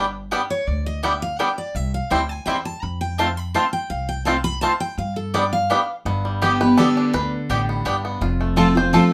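A straight 3/4 lilt at 167 BPM drives this joyful, virtuosic bluegrass excerpt in G mixolydian, where a full-bodied, up-front dreadnought acoustic guitar with fresh strings and audible finger squeak takes the opening solo until 6.1 seconds before the twangy, percussive fingerpicked banjo carries the melody through the close, as a double-strung mandolin adds woody stabs and a dark, thumpy gut-string upright bass sits low beneath them, over a G, C and F progression in a moderate studio room.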